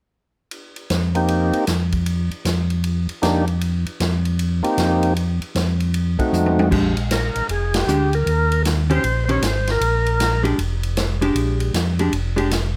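Soulful and greasy, this swinging soul jazz organ trio cut opens on a suspended F7 vamp before settling into sixth chords on Bb and Eb. A swinging big-band drum kit drives the groove with ride, hi-hat and crash cymbals over a punchy kick, a medium-tuned snare and toms, sounding natural in a studio room. Up front, a mellow tonewheel organ carries the bass line with a round, dark tone, lightly overdriven and colored by chorus vibrato and a slow rotary speaker. Another tonewheel organ takes the melody with a full, percussive voice, its second-harmonic percussion and key click cutting through the slow rotary and light overdrive. At 6.7 seconds, just after a drum fill, a clean, compressed hollow-body archtop guitar joins with picked accompaniment, and the band hits an accent at 7.7 seconds. Light reverb rounds out the mix of this excerpt from a longer piece.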